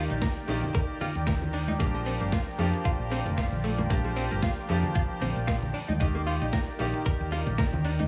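Set in light reverb and digital ambience, this sunny, groovy nu-disco excerpt rides a thumpy, up-front electronic kick and a gritty, overdriven sampler-style kit of hi-hat and snare, with ringing hard-hand bongos and congas in the background, a dark, round hollow-body bass and a brilliant grand piano with tape echo, both pumping with the sidechain, a lush, detuned sawtooth pad sustaining Ebmaj7 and Bb6 chords, and a clean, direct-recorded electric guitar picking a riff through subtle chorus and tape echo.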